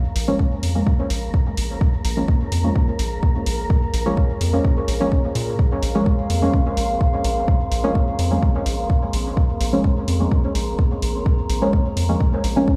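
A straight 4/4 pulse at 127 BPM drives this deep, hypnotic dub techno excerpt in Bb minor, with an up-front electronic kick drum entering at 0.4 seconds over a layered, tape-softened electronic hi-hat. Beneath them, a round analog bass with a nasal, filter-plucked edge and a dark sustain is thickened by tube saturation and pumps against the kick. Deep, mellow chord stabs on Bbm7 carry the harmonic weight, their soft sawtooth-and-sine tone smeared by chorus and phaser and trailed by dub echo. Behind the stabs, a warbling, lo-fi pad of detuned square and triangle waves holds sustained chords with slow attacks and long releases, its nostalgic haze deepened by chorus and built-in reverb. A breathy, wind-like tuned noise texture sits far in the background, and the whole mix carries the boom of a big sound system in a bare room, framed by large studio reverb and a light digital ambience.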